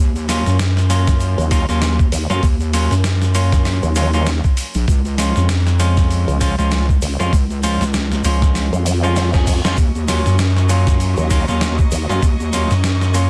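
Glitch hop with a gritty, funky swing, built on a heavy square-wave wobble bass that opens the track, joined by a nasal vowel-sweep wobble bass, a thumpy up-front electronic kick, a gritty boom bap sampler-style kit with a medium-tuned snare and hi-hat, a grainy tube shaker and clean hollow-body electric guitar stabs pumping through delay, while a reverse cymbal at 9.0 seconds and a drum fill at 9.2 seconds usher in lush, biting symphonic strings with 12-bit sampler grit at 9.8 seconds over a dry, dense, heavily limited mix.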